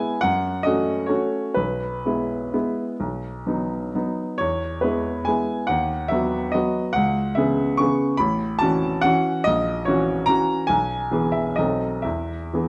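Playful and graceful, this short classical piano waltz in E major moves in 3/4 with a flexible, rubato feel, its tempo ranging between 122 and 153 BPM. A clear baby grand piano plays solo for the full 12.7 seconds, reaching from the deep A1 up to a bright C#6. The instrument sounds natural and up front, with short sustain, caught by close, detailed microphones and set in a moderate recital hall reverb. The harmony opens on F#m, passes through E/B, B, E and B/D#, then travels through C#m7, F#m7/A, F#7/A# and E/B before a B7b9 at 11.6 seconds resolves home to E at 12.1 seconds. This fragment is taken from a longer piece.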